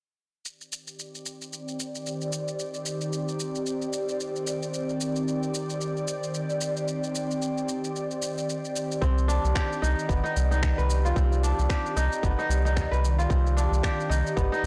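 Mystical and hypnotic, this organic downtempo excerpt opens with a layered bed of electronic shaker and finger snaps in a swung 4/4, soon joined by an ethereal, airy pad holding sustained chords through chorus, phaser and sidechain pumping. At 9.0 seconds a fingerpicked, ringing kora enters with crisp arpeggios through tape echo, joined by a round, deep analog bass with tube saturation and a tight electronic kick. The whole recording sits in a moderate echo chamber and sounds blown-out and overdriven.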